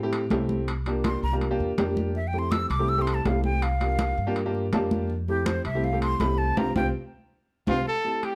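This Afro-Cuban jazz passage, cut from a longer piece, has a sunny, sophisticated mood and a straight feel. An intimate baby grand piano with audible action noise comps on a rootless Fmaj7 and C7sus4 chords, and a woody, growly pizzicato upright bass sits up front beneath it. Bright, damped congas and ringing, vintage-toned timbales fill out the percussion. A breathy silver concert flute enters at 1.1 s and carries a solo with crisp attacks, vibrato and an unsteady tone, while the piano slips in a brief fill around 4.5 s. During a band accent and a drum fill, a smooth-topped trumpet with scooped notes appears at 7.7 s. Light reverb gives the production a dark, warm sound.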